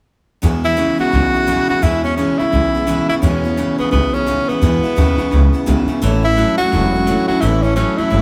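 A rollicking, rowdy rockabilly fragment at 172 BPM with a swung feel in E major opens at 0.4 s on a woody, thumpy upright bass up front, a twangy, slightly broken-up electric guitar riff through a small old amp and a bright, full-bodied picked steel-string acoustic guitar, before a breathy, close-miked tenor saxophone enters at 0.6 s with an intimate, whispered solo melody and light vibrato, the chords moving from E to A at 6.0 s in a lightly reverberant room where the band plays live.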